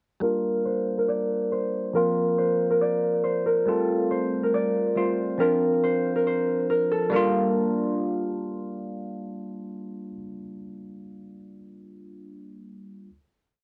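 A thumb-plucked concert harp rings out a looping, sample-like melody over bell-like electric piano chords in this melancholic, eerie half-time hip hop piece at 139 BPM in G minor, both filtered and softened by cassette tape in a lightly reverberant home recording, with a filter sweep across the breakdown before the harp stops at 9.2 seconds and the piano holds the final Gm7 until 13.1 seconds.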